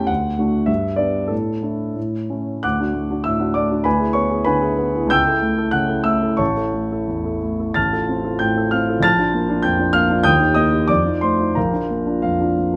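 Set in 2/4 with a pliant rubato feel, the music moves between 86 and 102 BPM, its pulse bending expressively rather than holding to a strict beat. This is a passionate romantic character piece for solo concert grand piano, cut from a longer work and lasting about 12.8 seconds. The piano spans A1 to A6, its tone warm and open with a deep bass, long sustain and an up-front presence captured by close, detailed microphones within a moderate recital hall reverb. The harmony opens around D, passing through G, a suspended A and E7 over D before settling on A, then shifts at 7.8 seconds toward Bb major by way of F over A. A brief cadence through Eb and F7 resolves onto Bb at 11.6 seconds, giving the fragment a sense of heartfelt arrival.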